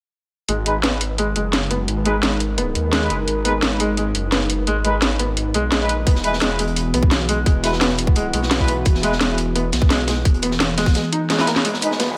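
Dark technical drum and bass at 172 BPM in G# minor, this tense, aggressive cut from a longer piece moves from G#m to E at 6.1 seconds and back to G#m at 11.6 seconds. A thick, swirling saw bass, detuned and saturated with phaser and overdrive, pumps against the sidechain beneath a resonant, evolving pad whose sustained chords bloom with a slow attack and chorus. A soft, felt-muted upright piano plays intimate arpeggios through a filter sweep and digital delay, while a mellow brass ensemble adds distant, roomy stabs with light vibrato. Up front, an electronic kit drives with a cracking snare and metallic hats and shaker, joined at 6.1 seconds by a tight electronic kick and a gritty, saturated breakbeat kit with a rolled-off top sitting in the background. A drum fill and a very quiet riser close the passage, all set in light reverb and small room ambience.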